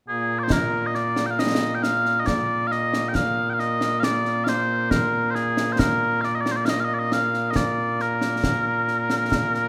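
Mellow, sweet small bagpipes open this ceremonial, proud fragment of Scottish traditional pipe music, carrying a continuous, up-front solo melody with vibrato in Bb mixolydian at a stately 68 BPM in 3/4, joined from 0.5 seconds by a live-sounding acoustic concert snare and bass drum with dark cymbals, all set in a moderate concert hall reverb.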